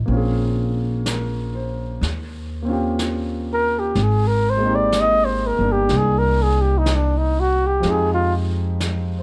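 A slow, swung 4/4 pulse opens this short cut from a longer jazz ballad, with pizzicato upright bass and grand piano sounding together from the first moment. Brushes on a medium-tuned snare and hi-hat join a split second later from a distant, roomy drum kit in a studio room. The bass sits up front, its steel strings giving a woody tone. The grand piano accompanies with a natural, long-sustaining sound, its action noise audible and adding to the intimate, romantic mood. At 3.5 seconds a mellow flugelhorn takes the lead, up front and jazz-inflected, scooping into its notes. The harmony moves through Bbm7, Eb13 and Abmaj9 before settling on Fm7, all under a light reverb.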